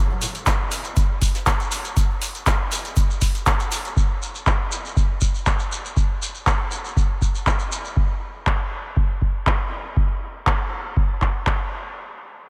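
A very quiet, airy brushed jazz kit with hi-hat, shaker and snare opens this driving, hypnotic acid house excerpt at 120 BPM, swung 53% on the 16ths, and drops out at 4.0 s, while an up-front analog drum machine with metallic hats and handclaps, a grainy, mellow shekere that stops at 7.9 s, and a deep, tape-warm electronic kick entering at 0.5 s carry the groove in light reverb.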